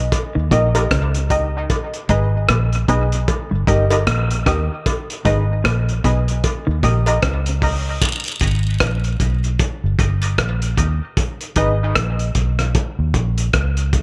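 A 76 BPM swung 4/4 groove in G# harmonic minor carries this hypnotic, deep dub reggae excerpt, built on a foam-muted, round fingered bass and a cloth-damped, muffled drum kit of kick, hi-hat and rim click up front, with cowbell and jawbone-type rattle through tape echo, a compressed clean electric guitar riff in the background, detuned sawtooth chord stabs with chorus swinging between D# and G#m, a brief lush-chorused mellow guitar at 8.4 seconds, a break until 8.0 seconds, a filter sweep from 4.9 seconds and a part dropping out at 11.2 seconds, all in light reverb.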